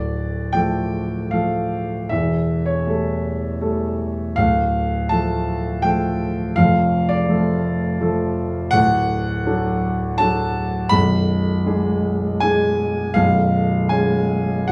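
A concert grand piano opens this passionate, bittersweet romantic character piece in D minor, played solo and up front with a warm, open tone, deep bass and long sustain across a range from B0 to B5. The tempo sits around 81 BPM in 3/4, but the beats are uneven and pulled by rubato as the harmony moves from D minor through A7/E and Dm/F to D major, then on to G#dim/B and C#7/B, the last arriving near 13.2 seconds. Light reverb and a small room ambience frame this 14.7-second fragment, cut from a longer piece.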